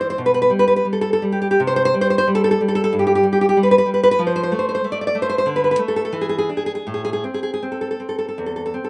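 Recorded outdoors with a light reverb and a softened top end, this short fragment from a longer romantic piece for solo classical guitar feels melancholic and intimate. The fingerpicked nylon-string guitar sits up front with a warm, acoustic tone and a slapback echo, moving in a free rubato through G/B, C5, F, Bm7/D and E7 before settling on Am at 6.9 seconds.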